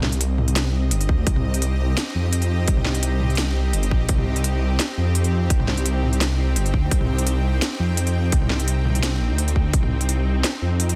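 Dark and cinematic, this half-time drum and bass excerpt moves at 170 BPM in C minor with a slight swing on the sixteenths, holding on a single C minor chord throughout. A barely audible koto, dry and woody under fingerpicks, flickers through a few arpeggios in the opening half second before vanishing. A deep, rumbling detuned saw bass sits up front for the whole stretch, saturated and beating, while a layered electronic drum kit brings a cracking snare, crisp hats and toms with a tape-warm character. A hard-clipped electronic kick joins at 1.1 seconds and drops out at 9.8 seconds. Behind them, a tense, string-like drone sustains bright detuned chords with slow attack, vibrato, its own reverb and a sidechain pump, all inside a dense, heavily limited mix with little room sound.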